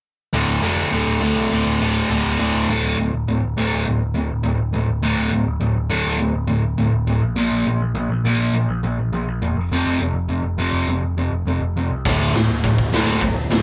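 A sludgy distorted guitar sits up front throughout this aggressive, raw punk rock fragment, its thick, overdriven riff moving through D5, Bb5 and F5 power chords before settling back on D5. Beneath it, an overdriven picked electric bass adds a growly, punchy low end for the whole passage. A bright, crunchy second guitar plays its own riff at the start, drops out at 2.7 seconds, and returns at 12.1 seconds. At that same moment a raw garage drum kit finally bursts in with hi-hat, a boomy kick and a medium-tuned snare, sounding saturated and gritty in a pumping stone room. The whole take has the rough, immediate feel of a rehearsal-room recording, with moderate room ambience and a straight, driving pulse.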